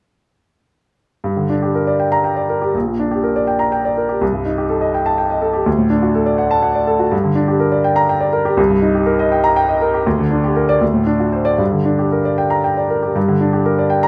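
Heard close and detailed in a dry room, a single warm, vintage-toned grand piano sits up front with a smooth finish, playing alone from 1.2 to 14.1 seconds in this fragment of a longer work. The piece is a stormy, agitated virtuoso classical study in G minor and 6/8, moving at 81 dotted-quarter beats per minute with a free rubato feel. Its harmony circles from G minor through a half-diminished chord and D major, touches C minor seven, and settles back on G minor after a D7, across a range from Bb1 to Bb5.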